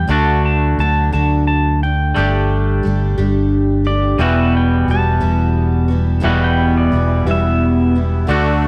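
A slow 6/8 pulse at 59 BPM in dotted quarters, played straight, carries this brief rock excerpt in E minor, reflective and dusty in mood. A round, amped fingered electric bass sits up front on the low end, while a picked twelve-string acoustic guitar shimmers with its octave-doubled strings and a bright, clean twangy electric guitar plays a riff. Over them the pedal steel guitar takes a solo for the whole passage, its compressed, fingerpicked slide tone marked by volume swells. The chords move from D to Gsus2 at 2.2 seconds and to Emadd9 at 4.2 seconds. At 6.2 seconds a very quiet, woody upright piano with short sustain joins in, along with a reedy musette accordion holding airy sustained chords in the background. The sound is dry and close, in the manner of a 1970s studio recording.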